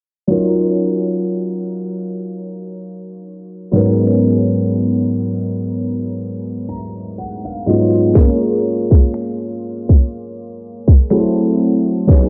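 A warm concert grand piano opens the excerpt, playing moody, sensual contemporary R&B chords in Eb minor at a slow 61 BPM in 4/4, with a light swing on the sixteenths. The piano sits up front with a natural tone and deep bass, spanning Ab2 to Bb5, and an analog chorus adds a gentle shimmer. The harmony moves from Ebm7 to Abm11, then to Bbm7 and F#m7b5, while a filter sweep runs through the whole passage and the piano plays a fill from 6.2 to 8.2 seconds. At 8.2 seconds a trap drum kit enters with finger snaps and a hard-clipped kick, its electronic, produced sound placed up front. Moderate plate reverb and a low-pass filter give the mix a dreamy, soaked quality, and the music is cut from a longer piece.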